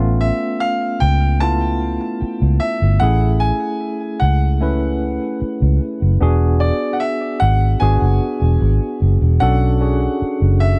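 Dry and dark, this short cut from a longer contemporary R&B piece sits close to the ear, with a warm, intimate production and little room sound. At a relaxed 75 BPM in a straight 4/4, the mood is smooth and dreamy. A vintage electric bass, foam-muted and round with an amped, dark tone, sits up front and anchors the low end from the start. Beside it, a clean tine electric piano heard through its built-in speakers carries the accompaniment in the middle register. From 0.2 seconds, a bright concert grand piano sings the melody high above in a brilliant, open voice, trailed by tape echo. The harmony moves through rich altered and extended chords before shifting to a new section at 9.4 seconds on Bm7.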